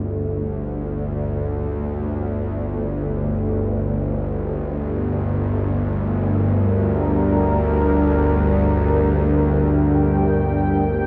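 Cavernous and dark, this ambient drone fragment opens on a tense, string-like bowed drone sitting low and up front, its sawtooth edge carrying a noise layer and vibrato, and at 6.0 seconds a deep, moody pad joins it with a slow attack, its detuned, evolving chords mellow and coloured by chorus and a sub octave, while the whole mix is soaked in a huge, dreamy reverb.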